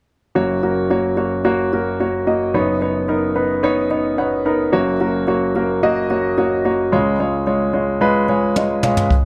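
A warm, polished grand piano carries this short, uplifting passage of piano-driven pop from a longer piece, moving in a straight 4/4 at 110 BPM in F# major through F#, Badd9/F# and C# chords. The up-front piano spans from deep bass notes to bright upper keys and adds fills at 3.6 and 8.0 seconds. At 8.6 seconds a small-room jazz brush kit with a boomy kick and toms enters for a brief hopeful fill, and a moderate studio reverb gives the sound a gentle sense of space.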